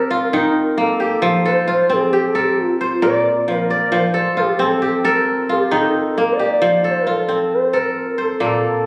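A bright, fingerpicked kora sits up front, its crisp, ringing arpeggios spanning Bb2 to D5 in this flowing, hypnotic West African string piece in F mixolydian, moving at 89 BPM in a straight 12/8. Above it, a smooth, soft-attacked lead with a triangle-and-sine tone carries the melody between F4 and Eb5, its sustained notes gliding by portamento and colored with vibrato, chorus and phaser. The chords circle through Eb, F and Bb across the 8.9-second span, and the whole is heard in a wet recital-hall reverb, captured on a phone in the room.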